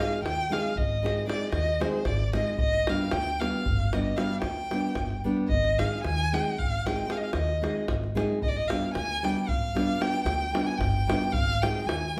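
Set in a straight 11/8 metre, this short cut from a longer piece of Balkan wedding-band folk feels bittersweet and restless as its harmony shifts between Ab and G chords. A single expressive, bowed violin carries the melody up front with a warm tone, vibrato and portamento, over a bright, full-bodied classical nylon-string guitar whose fingerpicked accompaniment on fresh strings lets some finger squeak through. A dark, woody pizzicato upright bass and a deep, compressed, saturated davul drive the rhythm, and the band sounds as if it is playing live in one room, bathed in a wet, large studio reverb.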